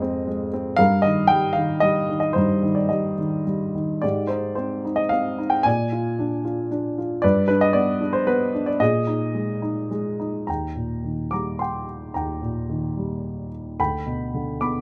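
Classical solo piano in a lyrical, relaxed and sunny mood, where an intimate baby grand with audible action noise and short sustain sits up front in a light reverb, moving freely in 3/4 through chords like Fm7, Abmaj7 and Bb7 before arriving at Eb at 10.5 seconds in this brief cut from a longer piece.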